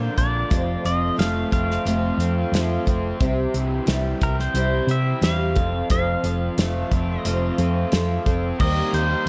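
A twangy pedal steel melody with slapback echo and volume swells opens this nostalgic folk rock and heartland rock excerpt over shimmering, octave-doubled twelve-string acoustic picking, a double-tracked overdriven garage guitar riff, very quiet tonewheel organ chords through a slow rotary speaker and a round, up-front hollow-body bass, with a dry 70s drum kit and its tight kick joining at 0.2 s in a dark, small-room production.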